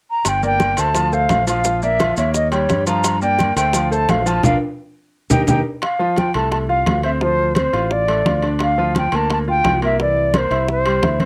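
An airy, mellow silver concert flute with vibrato and rolled-off highs sits up front, carrying a joyful, festive salsa melody in F major at 173 BPM, while a clear, intimate grand piano with audible action noise accompanies and a dark, round, punchy fingered electric bass holds the low end. Soft-handed congas, tight high-tuned bongos, distant ringing timbales and grainy maracas fill out the percussion, the maracas dropping out at 5.6 seconds just as a band accent and drum fill lead into the second section at 5.8 seconds. The flute and piano carry a cassette tape character, and the whole excerpt, cut from a longer piece, has the light reverb of a home recording on cassette.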